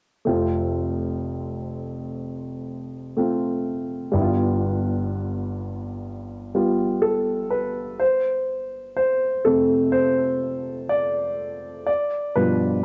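A warm baby grand piano carries this tender, hopeful pop fragment on its own, its present, polished tone sitting up front with a cassette-tape character and a moderate spring reverb in a home-recorded room, moving between F and G7 chords and stepping into a solo from 8.0 seconds to 12.8 seconds.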